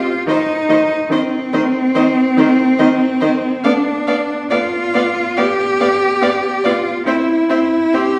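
Moving in a rubato 4/4 at about 71 BPM, this short cut from a slow romantic string quartet movement in C minor feels tender and serene. The cello sits up front and sounds from 0.0 s, holding the bass line with a rich, smooth, even bowed tone and vibrato. At 0.3 s the other three players join. A distant viola supplies the accompaniment with a soft attack, vibrato and expressive portamento, while two violins sit in the background: one carries the melody with expressive portamento and vibrato, and the other adds a warm, smooth second line just beneath it. The harmony moves from C minor over E-flat to G7 over B before arriving on C major near the close. A reverberant recital hall surrounds the quartet, heard from further back in the room, with a gently rounded top end.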